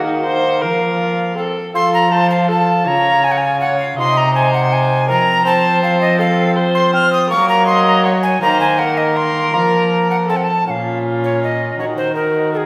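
An alto recorder carries the melody at the front of this courtly, solemn renaissance-style consort dance in triple time, its airy wooden tone marked by a crisp attack with chiff and a touch of vibrato, heard close and clear. Beneath it, a single bowed viola with a gut-string, period-style sound traces a reedy second line, while a solo bassoon supplies smooth-topped accompaniment with a light vibrato. A lone bowed cello anchors the bass with a nasal, gut-string tone that sounds distant yet sits forward in the blend. All four parts play throughout this short passage cut from a longer piece, with the harmony returning to suspended chords, some of which resolve, before a shift to new material at 10.7 seconds. The consort sits in a reverberant church or concert hall, giving the ensemble a generous, resonant halo.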